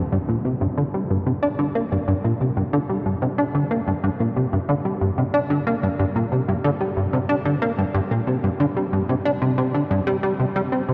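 A plucky analog bass carries this ambient fragment entirely alone, sounding from 0.1 seconds through to 10.9 seconds across a range from G2 to D4. Its tone is punchy and funky, built from sawtooth and pulse waves with a ring-modulated edge, a filter pluck, a fast attack and a decaying tail, and it sits up front in the mix with analog chorus and delay applied. The piece moves at 92 BPM in a straight 4/4, set in G minor with tuning at A4 = 437 Hz. A cathedral reverb with a 6.8-second decay soaks the dreamy mix, lending an expansive, cosmic mood. Cut from a longer piece, the passage holds to a single section throughout.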